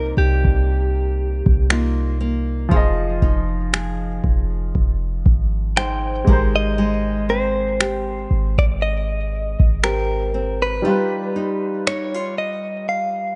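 A slow, lightly swung 59 BPM pulse of finger snaps and a deep analog-machine kick, entering at 0.4 s, carries this late-night, longing contemporary R&B fragment in F dorian, where a compressed, direct-recorded clean electric guitar sings the melody through spring reverb and tape echo over a natural baby grand piano, fingerpicked classical nylon-string arpeggios and a boomy sine-toned 808-style bass that drops out at 10.8 s for a break, as the chords move from Cm11 through Fm7 and Abmaj9 to a closing G7b13, all inside a small room.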